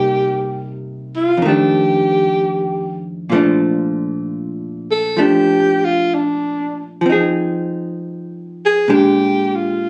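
A breathy alto saxophone and a dark, clean archtop guitar open together on a Cm7 to F13 progression, setting a wistful, intimate jazz mood at a slow 64 BPM with a gentle swing in 4/4. Up front, the saxophone carries the melody with a whispered tone, soft attack and vibrato, while the picked hollow-body electric guitar accompanies as the harmony settles into B-flat major at 3.3 seconds and moves through Bbmaj7, Fm7 and Bb6. Captured on a phone in the room, with club reverb and compression, this short excerpt from a longer piece feels close.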